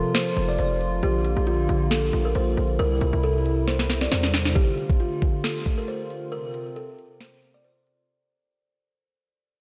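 A buzzing, woody kalimba carries a dark, eerie melody over a hollow, nasal pad, while a heavy, distorted 808-style bass drops out at 4.5 seconds and an overdriven trap kit with a knocking kick, sharp snare and crisp hats plays a fill from 3.7 seconds before the half-time 136 BPM hip hop excerpt fades out from 4.6 seconds in a dreamy hall reverb.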